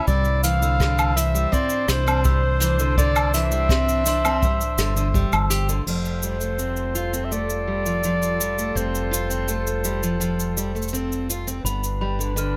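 Playful and pastoral, this folktronica excerpt moves at an unhurried 83 BPM in straight 4/4, set in F lydian and cut from a longer piece. A solo clarinet in classical style carries the melody between C5 and F5 until 11.3 s, over a fingerpicked dreadnought acoustic guitar whose full-bodied arpeggios, with fresh strings, sit behind a low-pass filter. A dark string quartet, one player per line, holds bowed chords with light vibrato and a nasal, reedy gut-string tone, while a round, punchy fingered electric bass sits up front in the low register. Jazz brushes on a kit with dark cymbals add cabasa, hi-hat, rim click, woodblock and crash, with a punchy kick in the background that stops at 5.3 s. A bell-like glockenspiel with soft plastic mallets rings airily in the background through a digital delay, dropping out at 5.5 s and returning at 11.6 s. The harmony moves from Cadd9 to Fadd9 at 5.9 s and lands on G at 11.7 s, all within a small room reverb.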